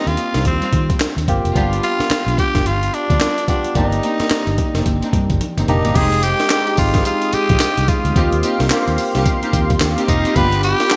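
A raspy, up-front tenor saxophone carries the melody in this bouncy, flirty new jack swing excerpt at 109 BPM in Eb major, backed by a barky tine electric piano with phaser, a round, foam-muted fingered bass, a gritty breakbeat sampler-style kit with a thumpy kick, high-tuned snare, handclaps, tambourine and gated reverb, lush bowed string stabs in the background, and an evolving detuned sawtooth pad with chorus and phaser that enters at 6.0 s after a drum fill, all set in a bright 1980s-style digital hall.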